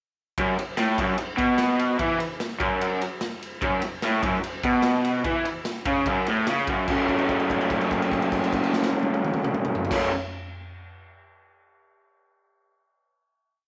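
A straight, stomping 4/4 at 147 BPM drives this short, swaggering garage rock piece in F# minor, where an up-front, double-tracked overdriven guitar picks a lo-fi single-note riff over a boomy, gritty drum kit of kick, snare, toms, ride and crash in a pumping small room with echo-chamber reverb, until the piece settles at 6.9 seconds onto a final chord, with a note held to 9.9 seconds.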